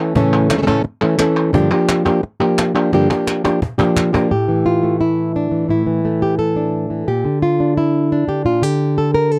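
A fingerpicked, up-front flamenco guitar carries the melody through this dramatic, mournful flamenco excerpt at 174 BPM in A phrygian dominant, moving from A and Gm7 to Asus4 and Bb. Woody cajon with faint snares and crisp, saturated palmas hand claps accompany the opening, with a drum fill from 2.9 s, before both drop out around 4.3 s and the guitar continues alone. The sound is dry and close, in a 1970s-style studio manner, with light reverb.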